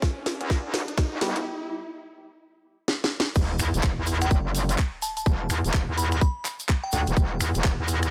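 A tight, up-front electronic kick and a garage drum kit with cracking snare, bright hats, crash cymbal, finger snaps and handclaps open this bouncy, aggressive bass house excerpt at 126 BPM in E minor with a swung sixteenth feel, as a riser and sub drop build toward the drop while a metallic, distorted FM wobble bass pumps with sidechain and a brief hollow, nasal organ stab flickers through chorus and delay; at 3.4 seconds the drop brings a grainy tube shaker and, from 4.2 seconds, a glassy, crystalline synth bell warbling in the background with delay, all in a light reverb.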